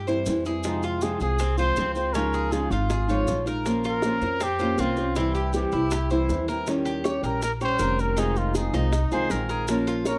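A straight 4/4 pulse at 159 BPM drives this nostalgic, danceable stretch of Cuban son and guajira in F minor, cut from a longer piece and moving through a short progression that lands on C, Fm, Dbadd9 and Eb7 along the way. Up front, a woody, thumpy upright bass with gut strings holds the low end, while the fingerpicked nylon-string guitar lays down accompaniment and a picked Cuban tres with metallic double strings spins arpeggios above it. Grainy maracas shake in a live room, and tight, high-tuned bongos played with soft hands sit in the background of the groove. From 0.7 seconds a breathy, whispered trumpet carries the melody close to the ear, its mellow vibrato trailed by tape echo. Near the close, at 9.1 seconds, a bright, reedy silver concert flute slips in briefly with a pure second line. The whole has the dry, close feel of a 1970s studio session, touched by light reverb.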